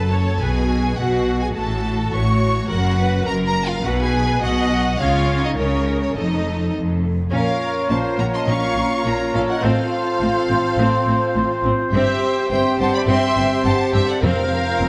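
Soaring and triumphant, this cinematic passage, cut from a longer piece, opens with a full bowed string ensemble in a straight 4/4, where a rich, focused violin section with vibrato carries the melody over a darker, woody second violin line, lush violas in the background and a distant cello section joined by expressive double basses. At 7.3 s the harmony turns minor and the woodwinds and brass join: an airy, hollow flute group, a very quiet solo oboe and a clear solo clarinet add second lines, a shadowy French horn section holds sustained chords, and a punchy, roomy trumpet section delivers tight stabs. A round, close timpani enters at 14.2 s on a suspended chord, all within a moderate scoring-stage reverb.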